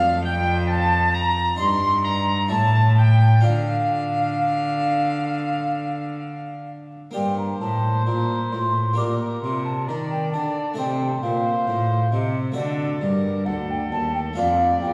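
Classical baroque-style sonata movement, solemn and flowing, in which a nasal, gut-strung violin carries the melody while a mellow wooden flute adds a vibrato-tinged second line, both sounding distant, over a brilliant, plucked harpsichord accompaniment and a rich, up-front bowed cello bass, the ensemble set in a wet concert-hall reverb and heard from further back in the room, in a passage cut from a longer piece.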